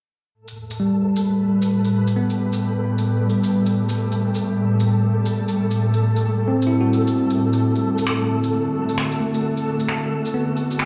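Heard through a big sound system in a bare stone room, this wistful, rainy future garage fragment, cut from a longer piece, swings gently on its sixteenths. An ethereal, airy pad with ensemble chorus and vintage sampler grit sits up front, holding sustained chords that move from Am9 to D around 7.6 seconds, while a bell-like tine electric piano, filtered and echoed by analog delay, plays accompaniment. Beneath them a flickering, granular texture hovers softly, and an electronic shaker with finger snaps keeps a quiet, small-room pulse.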